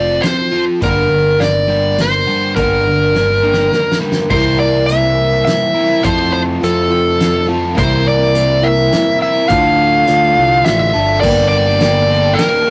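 A loose, straight 3/4 pulse at 104 BPM carries this short, wistful cut from a longer folk rock and heartland rock piece in G dorian, with a loose indie drum kit's punchy kick, fat snare and dark cymbals pumping in the room, a drum fill from 3.1 to 4.3 seconds, and a modern bright picked electric bass holding the low end. A dark, smooth, overdriven lead guitar sits up front with the melody over a boxy old ladder-braced acoustic guitar, whose finger squeak can be heard, and a double-tracked, compressed overdriven electric guitar riff, moving through chords from F and Gm to C7 and Dm. At 11.2 seconds a very quiet, lush bowed string section enters distantly on a Gmadd9, all within a rough rehearsal-room sound with moderate booth ambience and warm saturation.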